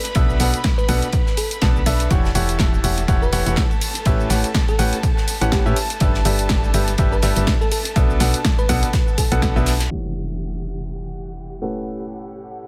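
This piano house excerpt moves at a bittersweet yet energetic pace, its swung sixteenths driving a chord cycle from Bm7 through Em69, A13 and G6. A clear, woody upright piano carries the riff, intimate enough that its action noise is audible, with sidechain pumping and dub echo trailing each phrase. Beneath it, a round, dark FM bass with tube saturation pumps against a punchy analog kick, while a layered house kit of cabasa, tape-warm hats and a punchy snare throws dub echo into the small, echo-heavy room. A second, acoustic kit of ride and medium-tuned snare sits in the background, and soft-attack bowed strings hold sul tasto chords with gritty 12-bit sampler texture and a pumping breath. A mellow, bell-like FM electric piano sparkles quietly with chorus and tremolo until about 9.6 seconds. The kick drops out just before, and the bass and acoustic kit follow at 9.9 seconds, where an up-front electronic impact lands and a filter sweep carries the piano, strings and house kit to the end at 12.7 seconds.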